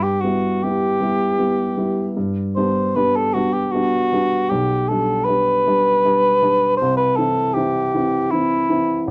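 Heard through worn, warbling cassette tape with warbly pitch drift and a moderate studio reverb, this yearning, elegiac romantic classical duo in a rubato 3/4 at 78 BPM sets a dark, punchy, close-miked cor anglais with light vibrato up front on the melody over a warm, natural baby grand piano accompaniment, moving from Em/G through G and G/B to C across a brief 9.1-second passage cut from a longer piece.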